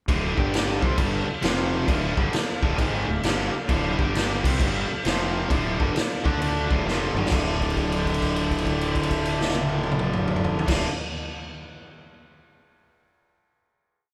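A biting, double-tracked overdriven guitar power-chord riff opens this heavy, smoky blues rock and southern rock power-trio piece in D minor at 133 BPM with a swung feel, doubled by a round, fuzzed fingered bass and driven by a raw, gritty garage drum kit with a punchy kick in a bright stone room, while a very quiet percussive tonewheel organ with key click and slow rotary speaker enters at 0.4 s holding chords, until a drum fill leads into a final held chord from 7.3 s that rings out to 10.9 s in the moderate reverb of a band playing live together.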